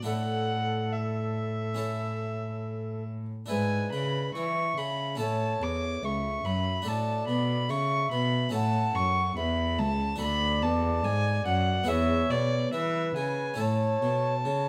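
Radiant and serene, this short extract from a baroque-style sonata movement with continuo sets a dark, nasal gut-string violin melody and an up-front, reedy cello bass over a brilliant Flemish-style harpsichord, while a pure, wooden baroque flute weaves a soft-edged second line through a close, detailed sound with light reverb.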